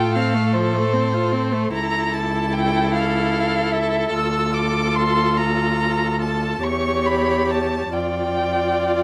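A veiled, distant muted violin carries the melancholic, yearning melody of this slow romantic string quartet movement in D minor, heard in a 9-second stretch cut from a longer piece, moving in a rubato 6/8 at 43-52 BPM over a second muted violin whose line glides with portamento, a soft-attacked muted viola accompaniment and an up-front, smooth-topped muted cello bass, each a single bowed player with vibrato and con sordino, captured by close, detailed microphones in a dry room.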